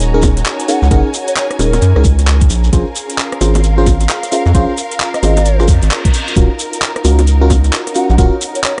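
UK garage in a swung two-step groove, moody and late-night, cut from a longer piece and soaked in echo. A rubbery square bass sits up front, with a knocking electronic kick beneath a garage kit of bongos, handclaps, metallic hi-hats and rim clicks, joined by a grainy shekere, glassy FM electric piano stabs with chorus and dub echo, and lush studio strings pumping over a very quiet, silky string machine. An airy wooden flute carries the melody with vibrato in the background from 0.7 seconds, and a reverse cymbal appears at 5.7 seconds just before the chords settle on Ebm9.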